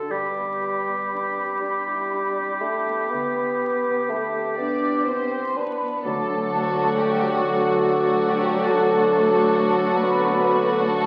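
Tender and warm, this slow, rubato romantic orchestral passage in 12/8 opens with a clear oboe, a dark clarinet and bassoon, and an airy, hollow flute group over ringing, thumb-plucked harp arpeggios in the background. Violins and lush cellos join at 4.6 seconds. From 6.0 seconds tuba and distant double basses anchor the bass, and from 6.1 seconds mellow French horns hold chords and a quiet trumpet adds stabs, while soon after a smooth violin melody with vibrato sings above very quiet, rich violas. The sound carries the crackle of a very old 78 rpm record in a reverberant recital hall, and the music is cut from a longer piece.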